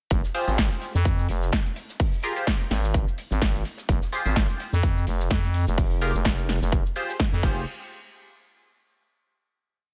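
Bass house at 127 BPM in F minor, bouncy and gritty, built as a single drop on Fmadd9 from 0.1 seconds before a final hit at 7.7 seconds. An up-front, punchy four-on-the-floor electronic kick and a layered big-room kit with crisp programmed hats, snare backbeat, cabasa and crash run alongside a growling, thick FM bass that plays chopped phrases with overdrive and sidechain pumping. Sparse, nasal, band-passed chord stabs moved in parallel echo through phaser and digital delay, while a very quiet, dark soul breakbeat loop with edits sits underneath in a digital ambience.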